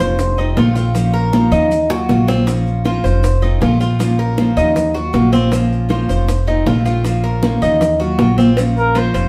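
Cuban son and guajira at 157 BPM in Bb harmonic minor, this nostalgic excerpt cycles through F7, Bbm(add9) and Ebm(add9) as a bright, metallic Cuban tres with doubled strings picks arpeggios up front over a picked steel-string acoustic guitar and a woody, growly pizzicato upright bass, while background congas, round low-tuned bongos with cowbell, and grainy maracas keep time, a drum fill runs from 1.3 to 2.5 seconds, and a mellow, punchy trumpet with vibrato enters at 8.8 seconds, all set back in a roomy studio reverb.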